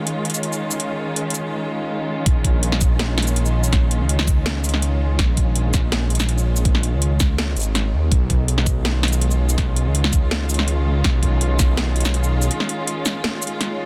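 Woody, sul tasto strings with lush vibrato open this dark, heavy half-time drum and bass excerpt, their sustained chords gritty with 12-bit sampler texture and sidechain pumping, over up-front metallic hats, shaker and a cracking, softly clipped snare, until the drop at 2.3 seconds brings in a knocking, tape-warm electronic kick and a deep, rumbling detuned sawtooth bass, saturated and up front, which plays until a brief break opens at 12.5 seconds within a dense, heavily limited modern master.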